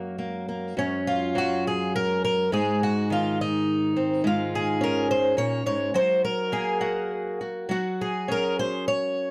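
Pastoral and gentle, this brief folk fragment cut from a longer piece features a solo fingerpicked twelve-string acoustic guitar, boxy and shimmering with octave-doubled strings, played up front and rubato in 3/4 at around 104 BPM, moving through chords built on Gb, Ab and Dbadd9/Ab in a dry, close 1970s-style studio sound that runs to 9.3 seconds.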